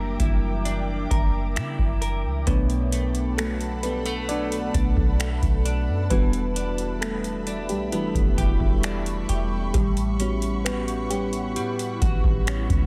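Contemporary R&B at 66 BPM in B minor with a moody, late-night air, this excerpt sets a round, full-bodied FM electric piano with chorus playing solo lines over an ethereal, detuned pad with tremolo, chorused clean guitar arpeggios with tape echo, a soft, deep 808-style bass and a booming analog drum machine entering at 0.2 seconds with finger snaps, metallic hats and a deep kick up front, moving from F#7b9b13 through Bm7, Em7 and A13 in a dry mix.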